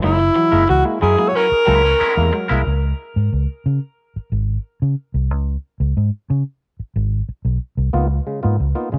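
Gritty, strutting funk at 91 BPM in a straight 4/4, this short cut from a longer piece opens on a Gb9 chord with a breathy, whispered alto saxophone melody carrying tape echo up front, a bright wah-touched clean guitar, a slightly broken-up picked guitar riff in the background, stringy clav stabs through a combo amp, and a distant horn section adding a second line from 1.4 to 2.3 seconds, before the round, punchy, foam-muted bass carries on through a Db7(no3) passage with the clav returning at 7.9 seconds, all set in moderate spring reverb and small room ambience.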